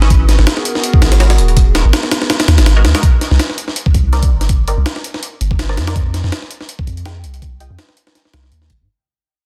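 A dense, heavily limited modern mix in a digital ambience carries this dark, nostalgic drum and bass cut with a jungle lean: a gritty, pitched-up breakbeat kit with a thumpy kick and high-tuned snare sits up front beside a deep, sine-toned 808-style bass with tube saturation, a warbling lo-fi pad hangs in the background until 3.0 seconds, and a nasal, band-passed sawtooth chord stab with phaser, dub echo and 12-bit sampler grit carries a filter sweep through the fade-out from 3.0 to 8.9 seconds over chords moving from Abm9 to Cm9 and Fm7.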